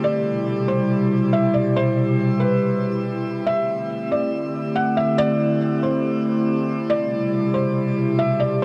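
A warbling, detuned pad sits up front from start to finish, holding sustained chords with a slow attack and long release, its square and triangle tones softened by chorus and its own reverb into a dark, nostalgic lo-fi haze. Above it, a felt-muted upright piano carries the melody in a soft, intimate register, with audible action noise and a mellow tone shaped by a low-pass filter and digital delay. This dreamy, blissful hip hop piece moves at a relaxed half-time feel, drifting from Cmaj7 to D9sus4 at 3.5 seconds and back to Cmaj7 at 6.9 seconds. A moderate shimmer reverb with a long tail surrounds the pair, giving the warm production a floating quality. The recording is a brief cut from a longer piece, lasting about 8.6 seconds.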